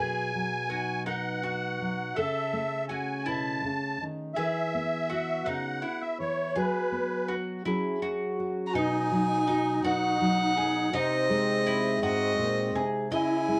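Gentle, nostalgic acoustic folk in B major at 55 BPM in 6/8, opening with a reedy, shimmering musette accordion taking the lead up front over bright, fingerpicked nylon-string guitar with a fresh-string finger squeak and woody, double-strung mandolin arpeggios, until an airy, nasal, gut-string violin with plate reverb enters at 8.7 s to carry the melody in a dark, softly reverberant production.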